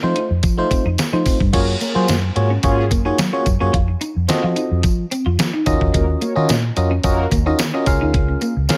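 A glassy, bell-like FM electric piano with chorus and tremolo supplies the accompaniment in this late-night, danceable early-eighties boogie funk excerpt, alongside a twangy, picked clean electric guitar riff, a dark, punchy foam-muted fingered bass, a thumpy detuned 8-bit drum machine, a jingly tambourine in the background and, from 1.5 to 7.3 seconds, a mellow sawtooth synth brass second line, all in a dry room as the chords move from F7 through Gbmaj9, F7b9 and Ebm9 to Db6.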